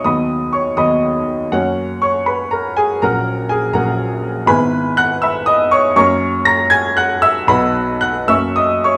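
Bathed in a wet, large-room reverb, this nine-second fragment of a romantic character piece features a solo upright piano, clear, woody and slightly detuned, moving through a hopeful, warm 6/8 with free rubato and a span from deep bass to high treble.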